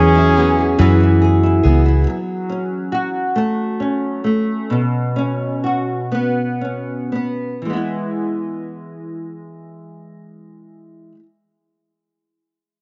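A round, punchy, foam-muted electric bass sits up front in this tender, swaying six-eight pop ballad fragment, sounding from the very start alongside a soft-attack jazz flugelhorn melody with light vibrato and scooped notes, a classical-style French horn section on a second line and concert-toned fingerpicked steel-string arpeggios in the background. A boxy, double-tracked nylon-string guitar with finger squeak plays from the outset too and carries on alone once the others drop out, until 11.2 s, its chords moving from Eadd9 through F#m and Bsus2 to E as the pace slows between 2.1 and 7.7 s.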